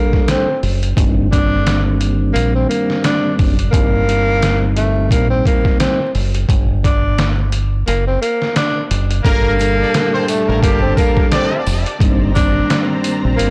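Moody and tough, this boom-bap hip-hop excerpt swings on a lazy sixteenth-note lilt, cut from a longer piece. A breathy, whispered tenor saxophone carries the melody up front, its scooped notes and vibrato given an intimate jazz feel with a touch of delay, while a mellow, flute-like tonewheel organ spun through a fast rotary speaker supplies soft accompaniment beneath. A gritty, pitched-down sampler-style drum kit with a thumpy kick and medium-tuned snare enters almost at once, joined by a round, dark fingered electric bass with tube saturation, both sitting firmly up front. The kick drops out briefly before the second section arrives at 9.2 seconds, when lush, bowed symphonic strings bloom into sustained chords and a brilliant trumpet section fires short jazz stabs with light vibrato, followed by a jingly tambourine tucked in the background. The whole recording is blown-out and overdriven, dusted with vinyl crackle and set in a small room with light reverb.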